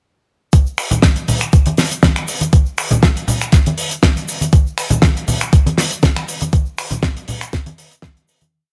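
An overdriven, thumpy electronic kick pounds a four-on-the-floor pulse up front in this short, sunny, feel-good nu-disco drum piece at 120 BPM, alongside a dry, damped 70s kit playing a disco backbeat with a fat snare, finger snaps, hi-hat and shaker, plus bright, close tube shaker and congas, all under light reverb before a fade-out from 5.9 to 8.5 seconds.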